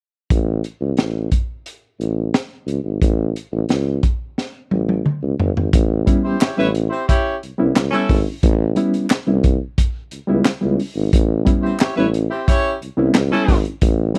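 Funk excerpt, energetic and playful, where a crunchy breakbeat drum kit with a punchy kick and high-tuned snare plays alongside a present tuba bass line from the start, then after a drum fill a reedy electric piano with fast tremolo adds stabs over A9, joined by a dark, octave-doubled horn section and crisp group handclaps in the background, all in a dry, close 1970s-style studio sound.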